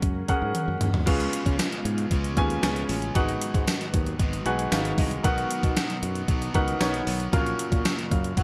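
A thumpy, overdriven 1980s-style drum machine with a gated-reverb snare drives this moody, urgent pop excerpt at 115 BPM, with a fill leading into the crunchy, picked electric guitar that enters at 1.1 seconds under a subtle chorus. A warm, polished baby grand piano carries the accompaniment up front and adds fills at 4.2 and 7.9 seconds, while a growly fretless bass sustains beneath and a very quiet, dark string-machine cello pad with phaser holds long chords. The chords move through F#add9, C#7, G#m7 and Bmaj7, all set in a bright digital production with moderate plate reverb.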